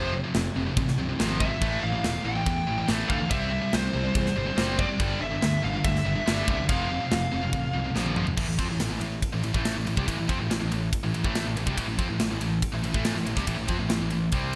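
Heavy metal in A minor at 142 BPM, relentless and heavy, this excerpt opens with a dark, high-gain lead guitar carrying a distorted, delayed melody over two picked rhythm guitars, one bright and heavy, the other scooped and sitting in the background, plus a fuzzy, overdriven bass, with a tight metal kit joining at 0.3 seconds. The polished drums sit up front with bright cymbals, a medium-tuned snare, a tight kick and gated reverb, and the lead drops out at 7.9 seconds, just before a drum fill at 8.0 seconds pushes into a second section driven by the riffing guitars. The chords move through F5, A5, C and G5 before settling on Am, all framed by bright 1980s-style digital production and light small-room ambience.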